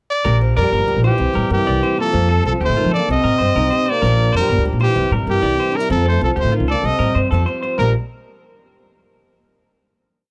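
A brilliant trumpet leads this short, danceable highlife piece, singing a motif-based melody in song-like phrases with vibrato and scooped notes, sitting up front from 0.1 seconds. Underneath, a woody, growly upright bass plays a syncopated pizzicato riff on steel strings, the loudest part in the mix, while a flamenco guitar with fresh strings rolls fingerpicked arpeggios, its finger squeak audible. A clean, compressed semi-hollow electric guitar picks a bright ostinato of arpeggios touched with slapback echo. From 0.6 seconds a soft-attacked trombone, also carrying slapback echo, adds a jazz-style harmony line mostly in thirds from the background. Moving at 128 BPM in a straight 12/8 in Bb major, the progression cycles through Bb6, C7, F and Cm before settling on a final Bb chord at 7.8 seconds, all captured in a dry, close 1970s-style studio sound.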